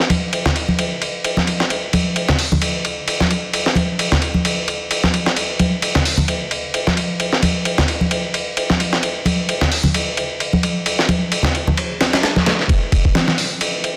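Playful and energetic, this breakbeat excerpt moves at 131 BPM in a swung 4/4, built on a dusty, soul sampler-style drum kit with a gritty, compressed sound, a thumpy kick, a medium-tuned snare, hi-hat and ride cymbal sitting up front. Bright, close acoustic congas struck with hard hands ride alongside the kit until 12.4 s. A lush hall reverb and vinyl crackle give the dense, heavily limited mix its character, and a build-up runs from 12.7 s to the end of the cut.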